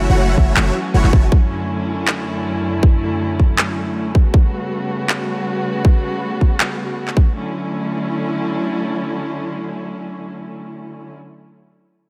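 Smooth, vibrato-rich chamber strings sit up front throughout this bright, lush future bass fragment at 159 BPM, holding sustained, evenly bowed chords in D major with a half-time 4/4 feel and sidechain pumping. At the very start, huge detuned supersaw chords, thickened by ensemble chorus, tape echo and a sub octave, flash a short riff beside a deep, boomy 808-style bass on F#1, and both are gone within the first 1.3 seconds. A hard-clipped electronic kick and layered, overdriven finger snaps and handclaps punch through up front until 7.2 seconds, after which the strings carry on by themselves. The harmony moves from F#m7 through Dmaj9/F# and Gmaj9#11, settling on Dmaj9 as a new section begins at 7.4 seconds. Light reverb lends the mix a gentle sense of space.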